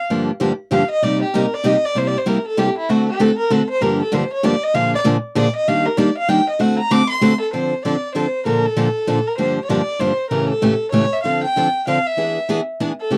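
Bittersweet and virtuosic, this swinging jazz waltz at 194 BPM in 3/4 pairs a nasal, earthy bowed violin with light vibrato, soloing from 0.1 to 7.5 seconds, against a bright, fresh-stringed picked steel-string acoustic guitar accompaniment, moving from G minor to D minor at 7.5 seconds, all captured in a dry, close 1970s-style studio sound with light reverb in this fragment of a longer piece.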